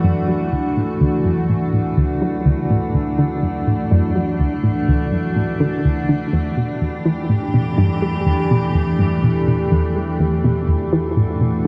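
Cosmic and luminous, this ambient, sequencer-driven space music clip moves from D to E minor at 6.3 seconds. A morphing, detuned wavetable pad with chorus and its own reverb holds mellow sustained chords up front, while a nasal, wave-folded analog pluck repeats a chorused, delayed riff under a filter sweep. A deep, round sine sub bass fades in beneath them in the background, all set in a wet concert hall reverb with a 2.1-second decay and a dark, warm production.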